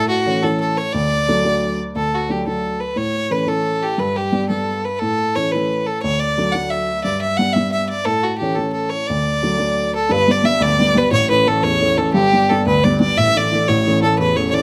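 Lively and rollicking, this Celtic folk excerpt in D major moves at 118 BPM in a straight 6/8, with a single bowed fiddle carrying the melody in a rich, smooth, even line touched by light vibrato. A woody upright piano sits up front beside it as accompaniment, both playing throughout the 14.6 seconds while the chords move among D, G and A, with an Asus4 at 13.2 seconds settling back to A. Close, detailed microphones capture the pair within a moderate recital hall reverb.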